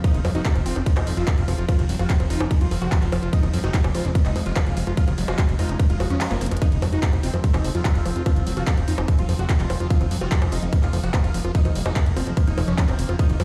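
Hypnotic and alien, this psychedelic trance excerpt drives forward at 146 BPM in a straight 4/4, set in F phrygian over an F5 chord. A tight, overdriven electronic kick sits up front with a fat, detuned sawtooth bass that plucks through its filter, while a layered kit of bongos, handclaps, bright hi-hats and ride cymbal adds its own overdriven edge. Higher up, a squelchy, resonant acid bass riff, distorted and delayed, sits back in the mix, and a punchy unison supersaw stab carries the melody with phaser, cassette tape colour and digital delay. Beneath them, a background drone of moving overtones blends sawtooth and sine with a slow attack, chorus, phaser and its own reverb, and sidechain pumping breathes through the stab, drone and acid bass. Around 6.0 seconds a faint electronic swell leads into a short break with a drum fill at 6.4 seconds, all heard dry yet set in a bare room on a big sound system with a large studio reverb.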